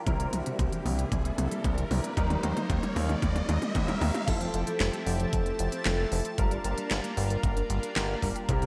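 A straight 4/4 pulse drives this uplifting, nostalgic synthwave excerpt, with a knocking electronic kick and an up-front pop kit of fat snare, crisp hats, handclaps, toms and crash soaked in gated reverb, plus a drum fill and an electronic riser through the first 4.3 seconds. A glossy, nasal synth bass pumps beneath a lush, airy detuned pad that carries a filter sweep over the opening, while a clean, compressed electric guitar riff and dark piano stabs sit in the background under chorus and delay. At 4.3 seconds a thick, bold unison lead with vibrato and delay takes the melody, all framed by a moderate hall reverb in a bright 1980s-style digital production.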